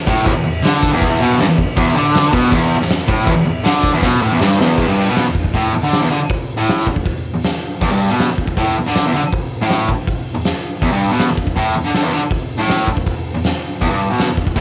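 A double-tracked, picked fuzz guitar grinds out a menacing, swaggering E minor riff low in its range at 159 BPM in straight 4/4, driven by an oversized low-tuned drum kit with a boomy kick, fat snare, hi-hat and crash that pumps in a big, saturated room, with a drum fill at 4.0 seconds leading into a new section at 4.8 seconds in this gritty, cassette-recorded garage rock excerpt.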